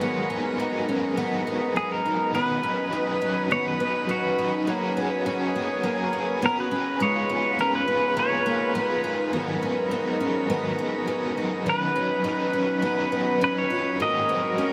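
Dream pop in an ethereal, blissful mood, this piece is cut from a longer work and moves in a straight 4/4. A picked twelve-string acoustic guitar spins shimmering, octave-doubled arpeggios with an audible finger squeak, treated with analog chorus and delay, while a clear woodwind section holds tight sustained chords with a smooth top and classical-style vibrato. A crunchy overdriven electric guitar, double-tracked and up front, fills out the accompaniment with tremolo and ensemble chorus. From 1.8 s a twangy pedal steel guitar carries the melody, clean and compressed, played with fingerpicks and slide, its volume swells trailing into delay. The harmony drifts from G#m7 through Badd9, F#sus2 and C#7 before a new section opens at 11.7 s and closes on G#7, and a wet shimmer reverb with a long 6.4-second tail hangs over the sound.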